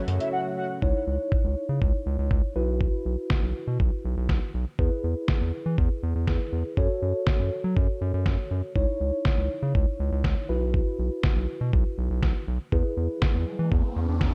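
Synth-pop with a driving, cool mood, cut from a longer piece, where a muffled, pitched-down sampler-style drum kit with a thumpy kick and fat snare and a round, wave-folded analog bass sit up front beneath a mellow tine electric piano, while a shimmering chorused pulse-width pad and a brassy synth brass line with vibrato and delay sound only briefly at the start, all in a dark production with light reverb and an electronic riser from 13.4 seconds.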